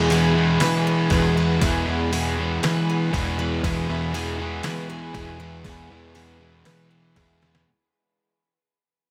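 Shoegaze-tinged dream pop rock in E major at 119 BPM, this short, wistful and dreamy cut fades out across its length, with a thick, dark fuzz guitar riff and an overdriven, fuzzy picked bass up front, while a raw garage guitar riff with overdrive and reverse reverb sits in the background. A bright, shimmering twelve-string acoustic guitar plays octave-doubled arpeggios through subtle chorus and digital delay, and the lush chorus on the fuzz guitar adds to the haze. A detuned 8-bit drum machine with a thumpy kick and fat snare, overdriven and heard in a small room, drives a straight 4/4 until a drum fill at 7.2 seconds, all within a light reverb.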